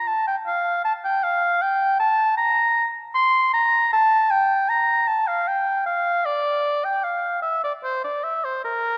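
In a rubato 3/4 at 77 BPM, this grave, solemn baroque-style fantasia for unaccompanied oboe, an excerpt from a longer piece, keeps the solo oboe up front for its full 9 seconds, ranging from Bb4 to C6 with light vibrato and a smooth top, set in a wet concert hall reverb within a dark, warm production.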